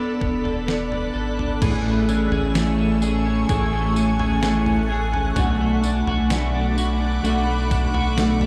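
An airy, detuned pad with chorus and phaser sustains chords while a slightly broken-up electric guitar picks dark, up-front arpeggios through chorus and delay, then a round, deep analog bass and a sampler-style 12-bit drum machine with a thumpy kick, fat snare, tambourine, toms and crash join at 0.2 seconds, and a clean, fingered guitar with harmonic tremolo enters in the background at 1.6 seconds as the harmony settles from E7sus4 onto Amaj7 and Bm7, giving this slow 64 BPM dream pop piece in A major an ethereal, blissful glow in a big, bare room wash.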